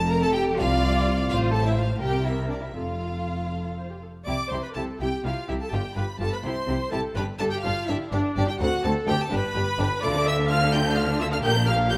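Graceful and cheerful, this quick classical-period string orchestra movement in 6/8 at 84 BPM unfolds with a rubato feel, moving from F major into C major at 4.3 s as a focused, vibrato-rich violin section carries the melody over a second violin line, a smooth, distant viola accompaniment, an expressive cello section and a rich double bass section, all set in the moderate reverb of a scoring stage.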